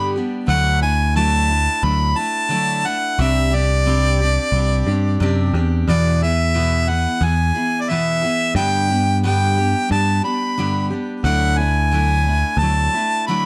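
A clear, close-miked harmonica with light vibrato, scooped notes and a slapback echo carries the melody up front in this nostalgic, hopeful folk rock and heartland rock excerpt, over a full-bodied, picked steel-string acoustic guitar with audible finger squeak and a punchy, direct electric bass entering at 0.5 seconds, as the chords move from Dadd9 through Csus2, E and G back to Dadd9 in a dark, lightly reverberant production.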